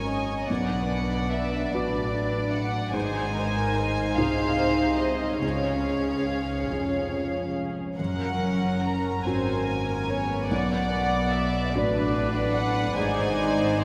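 A felt-muted upright piano, mellow and intimate with its action noise audible, carries the accompaniment through this tender, uplifting cinematic excerpt in a rubato 6/8 at 48 BPM, while violin sections sing a floating sul tasto melody and a second line, a vibrato-touched chamber viola section adds inner accompaniment, and cello and double bass sections ground the bass, all bathed in a long cathedral reverb as the chords move from Cbm through Ab, Db and Gb.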